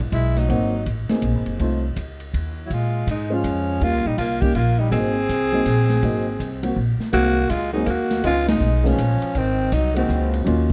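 A swinging 3/4 lilt at 162 BPM drives this playful, relaxed small-group jazz excerpt in Ab mixolydian, where a growling, raspy alto saxophone carries the melody up front over a breathy tenor saxophone second line with scooped notes, while an intimate baby grand piano with audible action noise comps, a woody, thumpy pizzicato upright bass anchors the low end, and a dark, smooth drum kit with a boomy kick keeps time, all in light reverb with a dark production and a band accent at 8.4 seconds.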